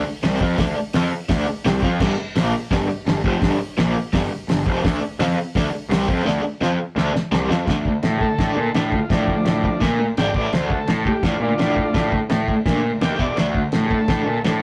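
A straight 4/4 pulse at 169 BPM drives this swaggering, raw garage rock excerpt in D minor, cut from a longer piece. The cloth-damped drum kit sits up front with a thuddy, dark character, a fat snare, tight kick, and dusky cymbals, and it plays a fill from 6.3 to 7.7 seconds that leads into the second section. Underneath, a growly fuzz bass, picked and overdriven, pushes forward beside a bright, double-tracked electric guitar riff that is compressed, overdriven, and colored with tremolo. At 8.2 seconds a reedy vintage combo organ enters with the melody, overdriven and carrying a light vibrato. The harmony moves mostly between D minor and power chords on G, A, E, and D, and the whole take has the rough feel of a rehearsal room, with tube saturation and a small-room reverb.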